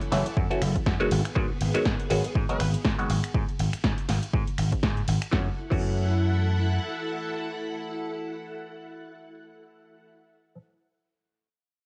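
An amped, punchy vintage slap bass sits up front in this nostalgic, sensual slice of filtered disco house, its tube saturation and sidechain pumping pushing the groove forward over a swung sixteenth-note feel. Beneath it, an overdriven electronic kick drum and a punchy analog drum machine supply snare, finger snaps, hi-hat, ride and crash cymbal, with sidechain pumping on the hats and cymbals. A muted, stringy clav runs through a combo amp with a phaser, while a lush string machine with a sawtooth, sub-octave body and slow attack holds sustained chords under an ensemble chorus, moving between F#m7 and G#m7. A very quiet trumpet section with light vibrato touches a single note at 2.5 seconds. The passage returns to F#m7 at 5.3 seconds, then the drums fall away at 5.9 seconds and the bass follows at 6.8 seconds, leaving the clav and strings, all coloured by light reverb and the grain of a home cassette recording.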